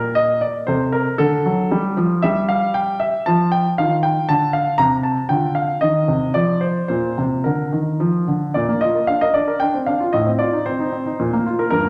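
A polished, up-front grand piano rings out in a lush recital hall reverb, playing alone through this 11.9-second fragment of a classical-period sonatina in Bb major. The mood is elegant and playful, moving in a flexible, rubato 3/4 at 106-121 BPM and spanning G2 to Bb5. The harmony opens on G minor, settles onto Bb around 6.9 s, and shifts into a new section at 8.6 s before the cut comes on a bare Bb fifth.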